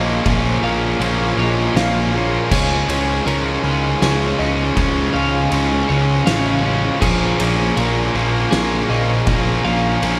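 Post-rock in a slow 3/4 at 80 BPM in Bb minor, melancholic and cinematic, moving from Bbm7 to Dbadd9 and back under a heavy wall of two distorted guitars, one thick with fuzz and one tight and up front, over a fuzzed, overdriven picked bass. A compressed twelve-string electric guitar with slapback echo spins clean arpeggios in the background, a very quiet, twangy guitar through a small old amp plays lo-fi arpeggios only until 2.5 seconds, and a very quiet, intimate string section holds soft, sul tasto chords with light vibrato. An oversized low-tuned acoustic kit enters at 0.3 seconds, saturated and gritty with a boomy kick, fat snare, crash and ride sitting in the background, all in a small room with light reverb.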